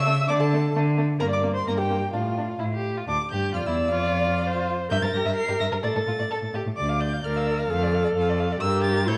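In a straight 2/4 at 130 BPM, this quick classical-period movement for string quartet in D minor feels dramatic and restless, and it is cut from a longer piece. The first violin carries the melody high above the ensemble, its focused, vibrato-laden tone crowned by a smooth top, while the second violin enters at 0.1 seconds with a second line that sounds distant and rich. The viola fills the accompaniment with a soft attack, expressive portamento and a close presence, and the cello anchors the bass, even and up front, with a smooth, rich bowed sound. Harmonies circle around D minor, touching G minor and a diminished chord on E, with a brief unharmonized moment at 5.8 seconds before the second section, begun at 3.1 seconds, returns to D minor. The whole recording sits in a recital-hall reverb and carries the worn, warbling pitch drift of old cassette tape.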